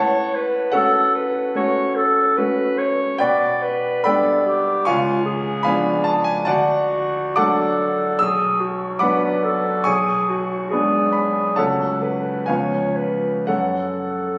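In a free, rubato 4/4 that drifts between 54 and 78 BPM, this melancholic, yearning romantic duo in F# minor has a mellow, vintage-toned clarinet singing the solo melody up front across the full 14.4 seconds. A brilliant concert grand piano with deep bass sits equally close, accompanying through a harmonic path that passes through G/B, C#7b9, D and G#dim/B before settling on F#m. Captured on a phone in a room with moderate stage reverb, the passage is cut from a longer piece.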